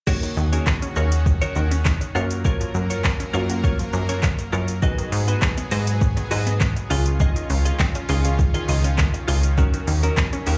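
An up-front, overdriven electronic R&B drum kit with a soft kick, fat snare, metallic hats, handclaps, shaker and crash cymbal drives this confident dance-pop excerpt in Eb minor at 101 BPM, joined at 0.4 s by a punchy, funky analog bass with sidechain pumping. A clean, direct-recorded electric guitar riff with analog chorus and slapback echo rides over a lush, airy supersaw pad that holds pumping chords through Ebm7, Gbmaj7, Abm7 and Dbadd9. Further back, a dark, round pluck with chorus and slapback echo accompanies, a very quiet, warbling vintage unison pluck adds arpeggios, and the music is heard as a live gig through the venue's PA with light club reverb.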